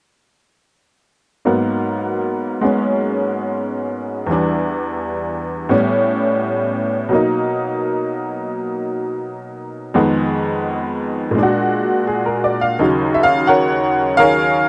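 Moody and late-night, this brief solo jazz excerpt cut from a longer piece swings at 85 BPM in 4/4 on a lone honky-tonk upright piano, detuned and jangly, sitting up front in a dry, close 1970s-style studio sound as it moves through rich chords from Abm9 to Ebm9, spanning Eb2 to Gb5 between 1.5 and 14.7 seconds.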